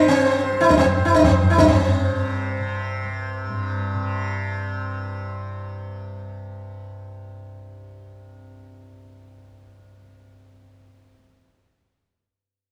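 A sitar and a tanpura open this meditative, serene Hindustani classical excerpt together, joined a moment later by the tabla, all in a straight 7/4 at around 172 BPM. The sitar carries the melody up front between C4 and C5, its plectrum-plucked tone buzzing and shimmering over the halo of its sympathetic strings. Beneath it, the tanpura holds a softly plucked, bright drone in the low register, buzzing with its own shimmer. The low-tuned tabla rings with live-room resonance but drops out at 1.8 seconds, while the tempo keeps pushing faster through the opening passages. The sitar falls silent at 5.6 seconds, leaving the tanpura's drone alone until 11.1 seconds, all bathed in the reverb of a stone room where the players perform live together.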